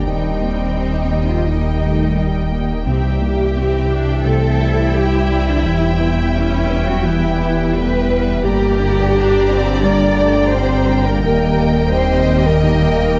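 Tense and relentless, this cinematic cue blends orchestra and electronics, with a distant, lush violin melody riding over a second violin line and a background viola section using portamento, while cellos, a close chamber double bass section and a punchy, pitch-dropping sub bass hold down the low end. A deep, evolving ambient pad with chorus and built-in reverb, mellow French horns and very quiet trombones sustain the chords beneath, as a soft, round, wave-folded pluck traces arpeggios from 0.1 to 12.8 seconds. The chords move from Eb through C, Em and Gm back to Eb, and the mix sits dark on a moderate scoring-stage reverb.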